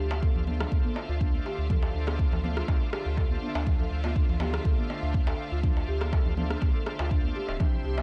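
A dark, studio-warm mix opens this hypnotic, spiritual afro house excerpt at 122 BPM in D minor, resting on a single Dm7 chord with a lightly swung 16th-note feel. A deep, tape-warm electronic kick sits up front over a round analog bass, while lush bowed symphonic strings hold sustained chords, a buzzing, woody marimba with soft mallets spins delayed arpeggios, and a shouting tonewheel organ adds overdriven stabs through chorus vibrato and a slow rotary speaker, these melodic parts and the bass all pumping with sidechain. Set back in the mix, bright high-tuned congas and a clay-shelled darbuka come in at 0.1 seconds, joined at 0.6 seconds by an overdriven rim click re-recorded in a large room.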